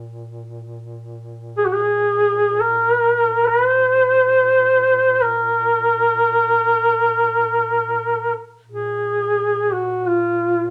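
Mournful and solemn, this Caucasian lament in free time, cut from a longer piece, opens with a dark duduk holding a low drone on Bb2 with vibrato and scooped notes before a mellow duduk enters up front at 1.6 seconds to carry the folk-style melody between F4 and C5 with its own vibrato, the two set in moderate studio reverb and tuned slightly below standard pitch.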